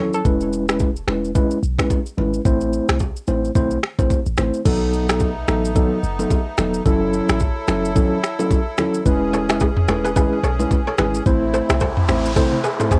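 A mellow tine electric piano opens this sunny, romantic afrobeats excerpt at 109 BPM in E major, joined at once by an up-front electronic drum kit with a knocking kick, finger snaps, rim clicks and shaker, very quiet hard-handed congas and bongos, and a deep, boomy sine 808 bass with tube saturation, before a reedy, sweet accordion adds sustained chords at 4.7 seconds and a bright, ringing fingerpicked kora riff with tape echo arrives at 9.3 seconds, all heard through the character of a home cassette recording with little reverb, ending on a noise sweep and a drum fill.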